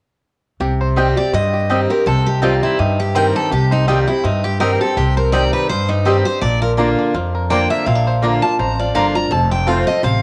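A brisk 4/4 swing at 165 BPM drives this short, lonesome and rustic bluegrass passage in C dorian, taken from a longer piece. From 0.6 seconds, a thumpy, up-front upright bass on gut strings plucks a woody low line. Alongside it, a full-bodied dreadnought steel-string guitar picks the accompaniment, and a twangy, percussive banjo played with fingerpicks carries the melody. A mandolin's double strings add stabs in the background from 1.0 seconds, and a boxy parlour guitar with fresh strings and audible finger squeak joins the melody at 1.2 seconds. The harmony sits on C minor before moving to Bb and then F, and the tape-tinged instruments, heard in a small room with light reverb, give the whole take the homespun feel of a cassette recording.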